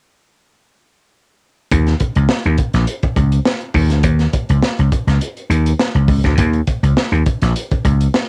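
Gritty and playful, this short funk excerpt pairs a growly, amped vintage slap bass, entering at 1.7 seconds and sitting low and up front, with a crunchy breakbeat drum kit of hi-hat, punchy kick and medium-tuned snare whose saturated, cassette-tape sound has a rolled-off top, all captured dry in a home cassette recording.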